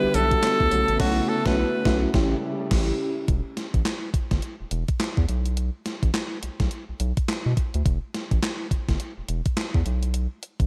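A slick, punchy new jack swing groove opens with a bright alto saxophone up front, carrying the melody in a jazz style with light vibrato and scooped notes. Beneath it, a mellow FM electric piano with tremolo supplies the accompaniment, while a dark, woody string section holds lush bowed chords in the background. A round analog bass sits up front from the start, deep and nasal, and a gated 80s drum machine enters almost immediately with a thumpy kick, an overdriven gated-reverb snare, handclaps, hi-hat, tambourine and crash, plus a barely audible metallic cowbell. The band hits a shared accent from 1.0 seconds, the saxophone drops out at 2.0 seconds, and the piano and strings stop at 3.3 seconds. From there the bass and drums carry the swung sixteenth-note feel alone, through passages with chords and passages with none. A concert hall reverb with digital ambience gives the whole mix a big arena sound.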